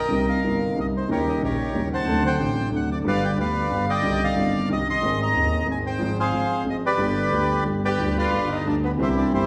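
Tango in 3/4 at 182 BPM with a rubato feel, passionate and sultry, where a reedy, dark bandoneon carries the melody up front over a smooth concert grand piano with deep bass and a vintage character, a bowed double bass with vibrato, and a bowed violin with portamento that enters at 7.9 seconds on an expressive second line, all set in the wet reverb of a recital hall in this excerpt cut from a longer piece.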